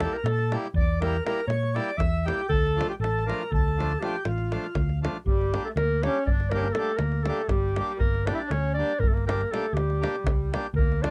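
An 11/8 pulse at 240 BPM in eighths drives this bittersweet, virtuosic Balkan wedding-band excerpt, where a mellow, smooth-topped clarinet sings the classical-style solo melody up front over a reedy, slow-beating accordion second line, a hollow accordion accompaniment, a round, amped hollow-body electric bass and a tight, close davul, all set in a dark production with light reverb as the chords move from Edim through Dm to Gm at 5.3 seconds.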